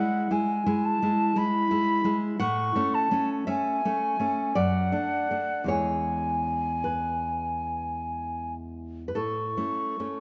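A moderate recital-hall reverb, with a 1.8-second decay, surrounds this tender, lyrical fragment of a romantic duo, cut from a longer piece and moving in a rubato 3/4 at roughly 47-58 BPM. An airy silver concert flute carries the melody with a straight tone and crisp attack, ranging from F#5 to C#6, while a fingerpicked nylon-string guitar with fresh strings supplies classical accompaniment, its finger squeaks audible. Both parts sit up front and play together throughout, moving from E7 through A, D/F# and E before settling on A at 9.2 seconds.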